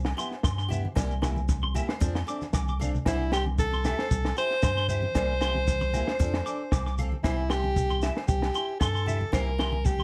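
A breathy, edgy alto saxophone takes the melody up front from 3.1 seconds, with scooped notes, after a drum fill on a compact cocktail kit with a punchy kick and high-tuned snare. It rides a carefree, warm highlife groove at 115 BPM in C major, built on a rubbery, hollow square-wave bass, a bright picked steel-string acoustic guitar, and twangy clean electric guitar arpeggios treated with ensemble chorus and tape echo. Grainy shekere, low-tuned congas played with soft hands, and ringing agogo bells fill out the percussion in this excerpt, all set in light reverb.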